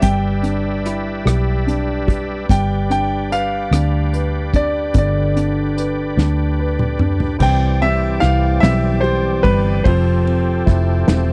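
Dry, close 1970s-style studio sound frames this tender, romantic six-eight pop ballad in C major at 49 BPM, where a clear, polished grand piano carries the melody over a second grand piano's warm accompaniment, a gritty overdriven tonewheel organ holds sustained chords with chorus vibrato, a round, foam-muted fingered electric bass sits up front, and an acoustic drum kit played with bundle sticks, its cymbals dark and kick tight, adds a fill from 6.2 to 7.4 seconds as the harmony moves from Em7/G and G to Cmaj7 and Fmaj7.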